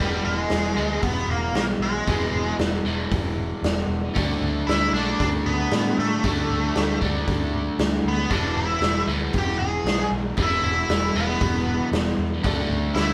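Gritty and raunchy, this short cut from a longer piece is blues rock in the power-trio mold with a southern rock swagger, moving in a straight four-four feel. An octave-fuzz lead guitar carries the melody up front, its dark, distorted tone colored further by wah. Beneath it, a biting, double-tracked overdriven guitar grinds out the riff across the chord changes from E to D5 and E5, also sitting forward in the mix. A vintage electric bass, foam-muted and amped, anchors the low end with a round, punchy thump. The raw garage drum kit joins at 0.5 seconds with a punchy kick, medium-tuned snare and hi-hat, its rolled-off top and smooth character set in a bright stone room, all captured as a band playing live together with light reverb.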